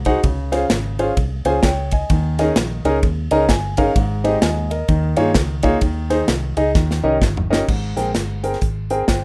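An uptempo gospel groove opens at once with a drum kit and a dark, foam-muted fingered electric bass, joined almost immediately by a clear concert grand piano, all in Ab major at 129 BPM with a swung eighth-note feel in 4/4. The mood is uplifting and reverent. The piano sits up front with deep bass and short sustain, voicing rich chords such as Dbmaj7, Eb7sus4 and Abmaj7 before resolving toward Abmaj9, and it breaks into a fill around 3.0 seconds. The drums sound airy and polished, with bright cymbals, a medium-tuned snare and a punchy kick, and they take a fill at 6.8 seconds that leads into a new section at 7.7 seconds. Beneath them the round, amped bass holds down the low end. The sound is dry, like a rough home demo, and the recording is cut from a longer piece.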